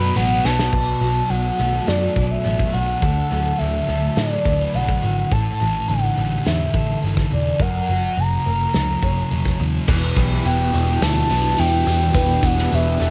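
A breathy sine lead floats over thick fuzz guitar, muted electric bass and bright twelve-string acoustic arpeggios from the first moment, with a loose indie drum kit arriving at 0.2 seconds and rolling into a fill at 0.4 seconds. This brooding, hazy shoegaze and dream pop fragment, cut from a longer piece, moves through Bm7, D, Asus4 and F# before settling on Em7. Up front, the distorted fuzz guitar is thickened with lush chorus, while the round, foam-muted bass anchors the low end. In the background sit a slightly broken-up guitar through a small old amp, trailed by reverse reverb, and the shimmering, octave-doubled twelve-string. At 9.9 seconds an overdriven, double-tracked guitar with phaser returns, joined by a very quiet jingly tambourine at 10.0 seconds and, from 11.4 seconds, a faint, deep, detuned ambient pad. The mellow lead carries the melody throughout with chorus, vibrato and tape echo, the drums carry a cassette-tape grit, and light reverb gives the whole mix the feel of a home cassette recording.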